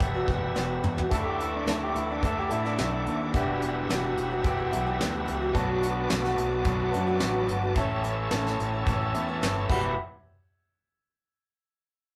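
Folk rock and heartland rock with a wistful, reflective mood: an overdriven, double-tracked garage guitar riff sits up front over a boxy, ladder-braced acoustic guitar, a round, punchy fingered electric bass and a brushed drum kit with a fat snare and tight kick, while a bowl-back mandolin is barely audible in the first 0.5 seconds. A reedy tonewheel organ holds sustained chords through a slow rotary speaker with chorus vibrato and key click, a very quiet, woody, slightly detuned upright piano adds accompaniment, and a dark, lo-fi electric guitar through a small old amp plays a second line from 1.1 to 4.4 seconds, returning briefly at 9.7 seconds. The rough rehearsal-room sound carries wet small-room reverb and lossy compression artefacts, and an early drum fill leads into chords moving through Dsus2, Emadd9, Bm7 and A.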